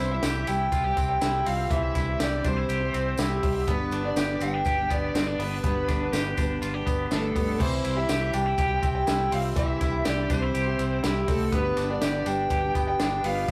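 A dark, overdriven lead guitar carries the melody in this youthful, bright jangly indie pop excerpt at 122 BPM in C major, over a clean, twangy electric guitar playing arpeggios through harmonic tremolo, a fingerpicked steel-string acoustic guitar, a ringing vibraphone with medium mallets in the background, a round, foam-muted vintage bass, a compact cocktail drum kit with a high-tuned snare and punchy kick entering at 0.2 s, and a jingly tambourine, set in a rough rehearsal-room recording with warm saturation and moderate reverb.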